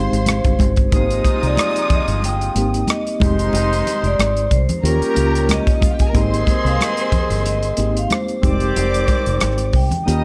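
Lush 1970s-style soul at 92 BPM with a silky, smooth 16th-note swing, where a metallic, ringing vibraphone carries the melody with slapback echo over a bowed, distant string section, a reedy electric piano with fast tremolo, a foam-muted fingered bass, a dry funk drum kit with a punchy kick, hi-hat and rim click, soft-handed congas in the background, and a mellow horn section adding octave-doubled stabs from 0.9 seconds, all moving through Fm9, Abmaj7 and Eb7 chords in this brief excerpt.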